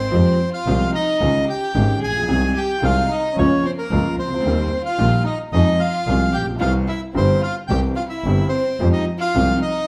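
Tango with a rubato feel, melancholic and passionate, cut from a longer piece. A reedy, dark bandoneon carries the melody up front, while a chamber violin section, bowed sul tasto with light vibrato and a soft attack, traces an intimate second line and a woody upright piano with short sustain supplies the accompaniment. A single earthy double bass, bowed with a smooth top, sits forward in the low end as the band plays live together in one room, wrapped in a wet stone reverb.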